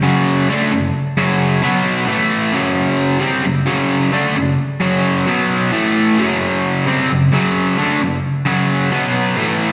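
Heard through a venue's PA in a recital hall, this short live rock fragment carries a light digital ambience and reverb that lend it a roomy, concert-floor feel. A single cranked stack guitar plays alone for the full 9.7 seconds, bright, overdriven and up front, with a slapback echo trailing its picked notes. The double-tracked tone sounds thick and heavy, and the mood is menacing. After an opening F# minor chord, the guitar grinds through power chords on B, A and F#, cycling the pattern twice before landing back on B5 at 8.9 seconds. In a straight four-beat feel, the whole passage lives in the guitar's low and middle register, lending it a brooding, riff-driven weight.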